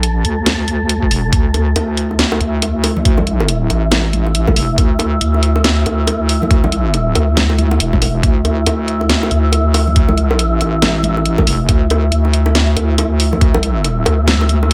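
A light, digital ambience surrounds this dark, cavernous excerpt of deep dubstep at 139 BPM in a half-time feel with swung 16ths, built over a D5 chord. An up-front, saturated wobble bass with a chorus effect and a garage kit of cracking snare and bright hats run throughout, joined at 1.0 seconds by a muffled, thumpy, pitched-down electronic kick and at 1.5 seconds by ringing bongos and congas played with soft hands and carrying dub echo. Above them, an airy, breathy wind-like noise texture sustains with its own reverb, and the kick drops out at 13.5 seconds.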